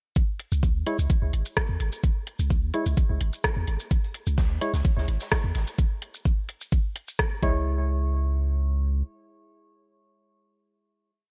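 A cool, sparse minimal techno piece opens at 0.2 s with an overdriven, knocking four-on-the-floor electronic kick up front and a tape-tinged analog drum machine playing metallic closed hats, shaker and rim, joined by a deep, punchy sine sub bass rolling in staccato with sidechain pumping, hollow organ-like chord stabs echoing sparsely through subtle chorus and digital delay, and a brief, faint looped acoustic big-band breakbeat of hi-hat, snare and tambourine arriving at 3.9 s, filtered and pumping, before a final hit from 7.7 s closes the dark, small-room mix.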